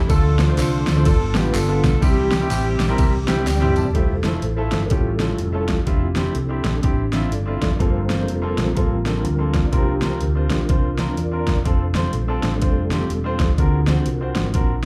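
Reverent and uplifting, this uptempo gospel excerpt swings at 124 BPM in F major, with a distant, roomy saxophone section stating the melody with slapback echo until 3.5 seconds over background tambourine and handclaps, while a clear grand piano fill from 3 seconds, joined by a drum fill, leads into a soft, flute-like tonewheel organ solo with slow rotary speaker and key click from 3.9 seconds, carried by a dark, round hollow-body bass and an up-front overdriven pop kit with a knocking kick and fat snare, all heard through a club PA with light reverb.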